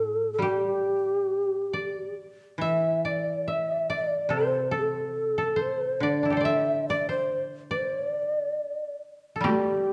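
Calm and austere, this short cut from a longer piece of Japanese chamber music drifts in a free, rubato feel, with an up-front bamboo shakuhachi carrying the melody in a hollow, airy tone with vibrato and a crisp, chiffy attack. Two dry, woody koto parts played with fingerpicks support it: one shapes a second line in the middle register while the other gives low accompaniment. At 9.4 s a taiko ensemble strikes briefly with heavy sticks, and a recital-hall reverb lends the whole a dark, warm finish.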